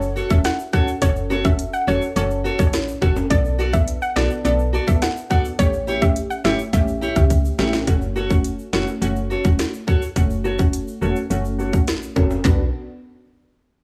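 A tough, bouncy dancehall cut opens on a chorused, low-passed analog pluck playing sawtooth-edged accompaniment, a woody, mellow FM bass up front, and a bright tube shaker with timbales sitting distant in a large room. Almost at once a dark, boxy fingerpicked parlour steel-string guitar adds low-passed arpeggios, and an overdriven electronic island pop drum kit takes the lead in the mix with a tight kick, sharp snare, smooth hats, rim clicks, handclaps and toms at a straight 105 BPM in 4/4. Over an F#m, Bm7 and A7 progression, a soft, gentle pluck carries the melody with chorus and slapback echo, its triangle-and-sine tone touched by ring modulation, until it stops at 7.3 seconds as the drums play a fill. From 7.9 seconds a filter sweep opens up a new section back on F#m, with the analog pluck, guitar, bass, drums and percussion driving the groove before the passage shifts to Bm near the end. 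The sound is close and dry, with only a small room ambience.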